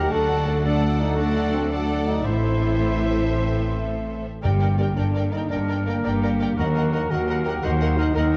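In a straight 12/8 at 112 dotted-quarter beats per minute, this determined, adventurous excerpt of heroic adventure film score moves through D, Am, Gm and Ebm in G harmonic minor, with a lush, vibrato-rich violin section carrying the melody. Around it, a clarinet, a pure flute ensemble, a second, more focused violin section and a distant oboe weave secondary lines, while intense violas, dark trombones and mellow French horns fill the harmony, a ringing, thumb-plucked harp arpeggiates, and a smooth-topped trumpet adds stabs. Bright cellos and up-front double basses anchor the bass, and soft-malleted calf-head timpani sound briefly from 4.4 to 4.9 s, all set in a dark production with a moderate scoring-stage reverb.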